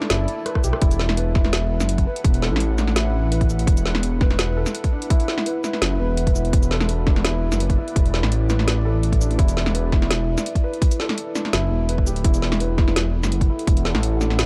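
A reversed, bright texture swells very quietly under a moody ambient pad, a soft felt-muted upright piano and an electronic drum kit, all heard from the start of this tense, cinematic half-time drum and bass. The pad sits in the background with deep, full-bodied detuned saws, a sub octave, chorus and built-in reverb, and sidechain pumping makes it breathe. The piano plays intimate, mellow arpeggios with audible action noise and dub echo. A rumbling, beating detuned saw bass sits up front alongside the kit's woody snare, metallic hats, rim click and shaker. An overdriven, hard-clipped electronic kick enters at 0.6 seconds, just after a drum fill begins at 0.5 seconds, and the drop lands at 0.8 seconds as the reversed texture ends. The production is dark and warm, with digital ambience.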